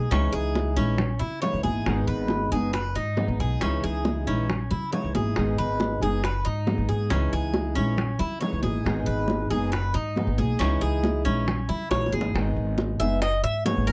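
Nostalgic and sultry, this Cuban son and guajira groove alternates between C#madd9 and G#m, with a fingerpicked steel-string acoustic guitar carrying the accompaniment, complete with audible finger squeak. Up front, a metallic, double-strung Cuban tres picks arpeggios over a woody, thumpy pizzicato upright bass on gut strings, while round, low-tuned bongos played with soft hands join warm, high-tuned congas, also softly played, that sit in the background. Recorded dry and close in a vintage studio manner, the passage ends with a short fill at 11.9 seconds that leads into a brief tres solo from 12.3 seconds.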